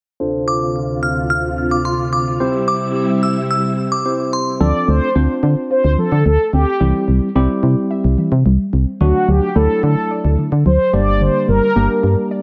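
Nocturnal and melancholic, this pop excerpt in D minor moves at 109 BPM in a straight 4/4, opening with a barky tine electric piano, vintage organ-like ensemble strings and a glassy, crystalline synth bell high above, as a filter sweep runs until 4.6 seconds. There the organ-string pad and bell fall away, and a punchy, round FM bass, a detuned brassy synth lead and a warbling, lo-fi pluck playing arpeggios in the background take over, while the electric piano carries on to 12.4 seconds. The chords move from Dm7 to C, later reaching D and Gm, all set in a light reverb.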